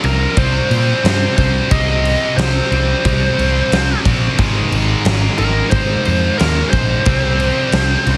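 A straight, steady 4/4 pulse drives this menacing, heavy hard rock excerpt, with a big acoustic drum kit sitting up front: a punchy kick, a fat snare and crash cymbals ringing in a bright stone room. A growly, amped picked electric bass shares the foreground with the drums. Behind them, two scooped, high-gain electric guitars play a distorted riff built on a C5 chord that moves to Ab at 4.4 s and returns to C5 at 7.1 s. From 0.1 s a distorted lead guitar carries a high melody over the top, its tone trailed by analog delay. Light reverb and a heavily compressed, radio-like sound make this short fragment loud.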